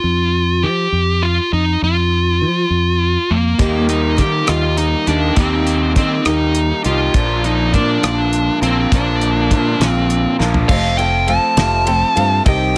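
A small room ambience and light reverb frame this short excerpt of folk rock and heartland rock, reflective and wistful in mood, moving at a slow 68 BPM in a straight 6/8. A dark, smooth lead guitar with overdrive carries the melody up front from the opening, joined by a punchy, fingered electric bass that sits close and direct. At 3.6 seconds the band fills in: a bright, picked steel-string acoustic guitar picks out accompaniment, a crunchy, double-tracked overdriven guitar adds a riff, and a damped 70s drum kit enters with a fat snare, tight kick and dark cymbals, as the harmony moves from Eb to Bb. A drum fill at 10.4 seconds leads into a new section on F, where the riff guitar drops out and a woody, slightly detuned upright piano appears softly in the background. The recording is cut from a longer piece and ends while the band is still playing.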